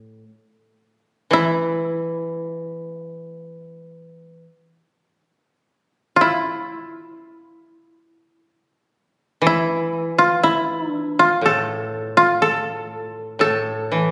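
Unhurried and rubato, with uneven beats that float over a loose 4/4, this calm, austere cut from a longer piece of Japanese chamber music sets two acoustic kotos plucked with fingerpicks in a brief opening before the main passage takes over at 1.3 seconds. One koto carries the melody between E4 and A4 while the other, lower and softer, accompanies between A2 and E3; both sound mellow, woody and dry, placed up front. The phone recording catches a moderate recital hall with a 1.8-second reverb tail, shaped by added studio reverb and compression.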